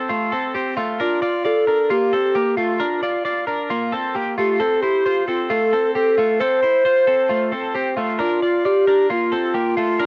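A mellow, hollow alto flute carries the airy, straight-toned melody from 1.0 seconds over a twangy, compressed twelve-string electric guitar that picks clean arpeggios up front with a cassette-tape tint, giving this bright, breezy indie pop excerpt at 133 BPM in 4/4 a homespun, small-room feel as it moves between F and Gm7.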